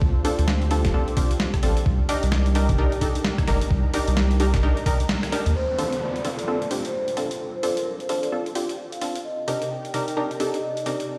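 Bouncy and late-night, this excerpt of swung two-step UK garage sets a smooth, warbling vintage analog pad with chorus in the background and punchy, detuned sawtooth chord stabs with tape echo up front over a deep, thick, saturated sine sub bass and a gritty, thumpy pitched-down kick, while a compressed sampler-style boom bap kit of hi-hat, rim click and medium-tuned snare carries on after the kick and bass drop away by 5.5 s, when a mellow, ringing soft-mallet vibraphone with slow motor vibrato and tape echo enters at 5.6 s beside an electronic downlifter, the whole mix set in a lush hall reverb and heard through a big sound system in a bare stone room.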